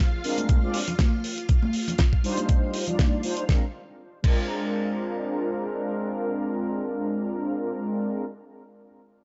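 Groovy and feel-good, this nu-disco excerpt at 120 BPM in Bb mixolydian opens with a lush, sidechain-pumped string machine carrying gritty, sustained Bb7 and Ebmaj9 chords until 3.5 s, while round, detuned synth brass with chorus and tape echo sits up front and carries on to 8.3 s; bright, high-tuned congas and a dry 70s drum kit with a fat snare add color, and a knocking electronic kick drives the groove from 0.5 s in a small-room ambience.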